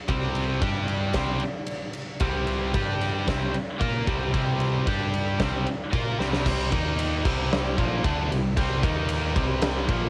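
Heavy and aggressive, this hard rock fragment from a longer piece drives along at 113 BPM in C minor, its power chords shifting among C5, G5 and Eb5. An up-front, tight distorted guitar carries the main riff with a bright, picked edge, while a cranked stack guitar adds an overdriven second riff from the background until it drops out at 6.4 seconds. Beneath them, a picked electric bass growls with an amped, punchy overdrive. The huge arena drum kit sits up front with a fat snare, punchy kick and bright crash and ride cymbals in a pumping hall sound, and a drum fill at 6.2 seconds pushes into the second section. Cassette tape coloring on the guitars and drums, light reverb and small-room ambience give the whole thing the rough grit of a home recording.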